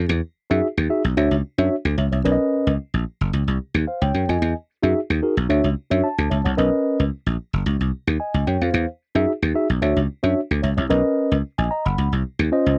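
Danceable and smooth, this early-eighties boogie funk excerpt at 111 BPM in B major pairs a punchy, growly thumbed slap bass with a mellow tine electric piano that enters at 0.5 seconds to voice a cycling Emaj9, Dmaj9, Bmaj9, C#maj9 progression, adds a brief fill at 5.8 seconds, and sits up front alongside the bass in a dry, close, 1970s-style studio sound.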